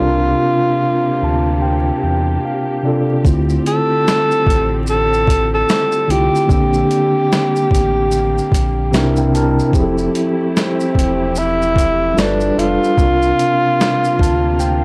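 A mellow, close-miked tenor saxophone carries the jazz-style solo melody up front, with soft attacks, scooped notes, light vibrato and a tape echo, in this nostalgic, melancholic lo-fi hip hop excerpt at 74 BPM with a swung 16th feel. A clean tine electric piano heard through built-in speakers and coloured by cassette tape plays the accompaniment over chords like Dm7, Bb6 and Fmaj9, while a lush, distant string section holds bowed chords in the background and a deep sine sub bass with tube saturation sits underneath. The gritty, pitched-down boom bap drum kit, with its thumpy kick, snare, hi-hat and shaker, enters at 3.2 seconds, its kick muted at 14.6 seconds, all within a dry, gritty hardware sound dusted with vinyl crackle and light reverb.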